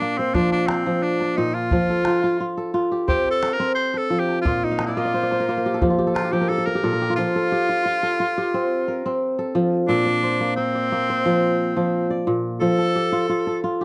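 A straight, even 4/4 pulse carries this flowing, joyful piece of West African string and xylophone music, cut from a longer performance. A fingerpicked kora runs arpeggios across a range reaching from low Bb2 up to F5, its ringing, crisp tone sitting up front for the whole passage. Over it, a breathy tenor saxophone takes a solo in the first half, singing in an intimate, whispered voice with a soft attack, scooped notes and vibrato, bright and close in the pop style. A small calabash adds quiet percussion until about 6.9 seconds, and the kora slips in a fill from 4.7 seconds as the opening section closes. The harmony sways between Bb and F chords, and the dry, close 1970s-style studio sound keeps every part immediate.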